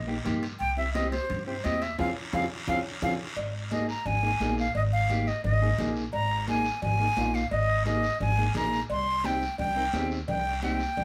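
Cumbia in a straight 4/4, passionate and fiery, cut from a longer piece and played by a band live in one room with moderate studio ambience. A breathy, close-miked silver concert flute carries the melody up front with a tongued, straight, expressive tone, while a growly, woody upright bass played pizzicato sits up front beneath it. A dark, clean electric guitar fingers the accompaniment, adding a short fill near 2.8 seconds as a drum fill and band accent mark the move into the longer second section at 3.4 seconds. In the background, bright high-tuned congas struck with hard hands and a raspy guiro sound distant, as if in a large room, alongside ringing metal-shell timbales and cowbell. The harmony moves through Eb, C, Fm and Absus2 before settling on Cm near the end.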